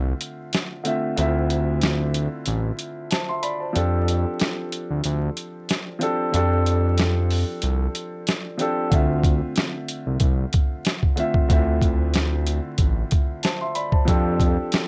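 Dark and gritty, this boom-bap hip-hop excerpt moves in 4/4 with a light swing on the sixteenths, cycling between Dm7 and F69 chords. A dark grand piano carries the accompaniment from the opening through 14.9 seconds, its mellow, vintage tone given long sustain and filtered through a cassette-tape character that trims both its lows and highs. Beneath it, a smooth synth bass blending sawtooth and square waves holds the low end with a saturated, evolving tone, fast attack, sustained notes and touches of vibrato. The sampler-style drum kit enters at 0.2 seconds with a thumpy kick, a medium-tuned snare and hi-hat, sounding compressed, pitched down and tape-warmed. All three parts sit up front in a dry mix with little reverb, while vinyl crackle runs throughout for a dusty surface.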